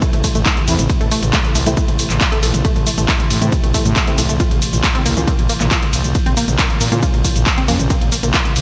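Relentless and hypnotic, this driving peak-time techno excerpt is built on an overdriven electronic kick and an up-front drum kit of handclaps, warm hats, ride cymbal, shaker and toms in gated reverb, with a thick, growling FM bass pumping beneath them. In the background, a detuned sawtooth sequenced riff with chorus and digital delay and dark, crisp wavetable chord stabs, both sidechain pumping, move from Am to Bbm at 4.4 seconds. An eerie, metallic inharmonic drone with chorus and its own reverb swells in at 0.1 seconds, all within a bright 1980s-style digital production.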